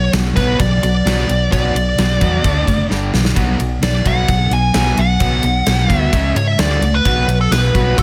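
A straight, driving 4/4 pulse comes from a gated 80s drum kit, up front in an airy, polished big-room sound with a punchy kick, a medium-tuned snare and bright ride cymbal, and a drum fill from 2.9 to 3.4 seconds in this menacing hard rock excerpt. Beneath it, a dark, round hollow-body short-scale bass, fingered and amped, supports two picked, overdriven riff guitars: a crunchy one and a cranked stack set back in the mix. Up front, a nasal lead guitar with a parked wah and analog delay carries the melody over chords moving from Bm through D5, G5 and B5, all within a small room ambience.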